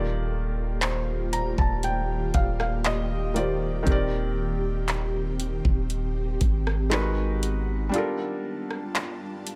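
Contemporary R&B with a romantic, dreamy mood, heard in a short excerpt cut from a longer piece. A felt-muted upright piano carries the accompaniment, soft and intimate with audible action noise and short sustain, and plays a fill from 0.8 to 3.9 seconds. Behind it an ethereal, airy pad holds sustained chords with ensemble chorus, built-in reverb and sidechain pumping, while a deep, sine-toned 808-style bass sits up front with long, decaying notes until 7.9 seconds. A very quiet, pure FM synth bell adds texture, and a barely audible electronic downlifter sounds at the opening. The electronic drum kit enters at 0.8 seconds with a knocking kick, metallic hats, handclaps and rim clicks re-recorded in a small room, and a break arrives at 7.9 seconds as the harmony moves through Ebmaj7, Cm7/Eb, Abm7 and Gm7. The room sound is dry.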